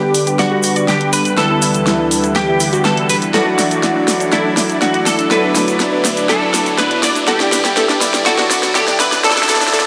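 In a straight pulse, this euphoric, hopeful progressive house fragment is a build-up driven by a deep house drum kit, whose fat, up-front snare and hi-hat carry a drum fill throughout, while a grainy acoustic cabasa ticks in the background. A twangy, compressed clean electric guitar leads the melody up front with ensemble chorus and delay, over a detuned, bright analog pluck playing arpeggios, a soft, airy supersaw playing stabs through a filter sweep, and a smooth, ring-modulated pad holding sustained chords such as G/D and Dadd9. A very quiet riser enters at 1.2 seconds, and the whole mix sits in a lush, wet hall reverb.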